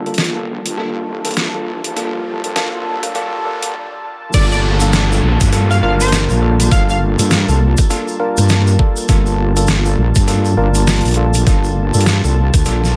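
A heavy, saturated wobble bass sits up front in this gritty, playful glitch hop excerpt at 101 BPM in G minor, swinging on a Gm9 chord beneath a detuned sawtooth pad with a filter sweep, clean tine electric piano stabs through a combo amp with sampler grit and delay, and a background riser that builds to a short break at 3.7 seconds. The drop hits at 4.3 seconds, where an overdriven, knocking kick joins the dubstep kit's deep snare and bright hats, a distant, grainy tube shaker enters, and an edgy, tearing sync lead with vibrato carries the melody until 7.0 seconds. The echo-heavy mix sits in light digital ambience, with sidechain pumping on the pad and piano.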